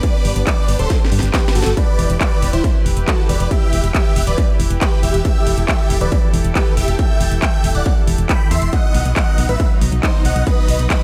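Uplifting trance at 138 BPM in E minor, emotional and soaring, with a huge, euphoric supersaw lead carrying the melody through cassette-tape grit, digital delay and sidechain pumping over a lush, warbling vintage pad that holds sustained chords with chorus. An up-front distorted electronic kick drives the track alongside a techno kit of cracking snare, metallic hats and handclaps, with a drum fill at 0.9-1.8 seconds, while a punchy, round FM bass enters at 0.3 seconds and pumps beneath. The harmony moves from G to E minor to B in a dry mix, cut from a longer piece.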